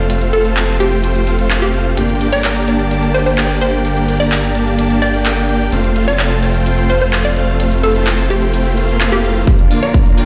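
Festival progressive house in a euphoric, uplifting mood, this cut from a longer piece sets huge, bright supersaw chords pumping with sidechain and trailed by digital delay over a thick, mellow detuned saw bass, a warbling vintage unison pad in the background, overdriven big-room drums with handclaps and hi-hat, and a hollow, bouncy square pluck melody, as a very quiet electronic swell enters at 8.7 seconds before a punchy, tape-warm kick drum lands up front at 9.5 seconds on the move to Bb, all heard through a big sound system in a bare stone room.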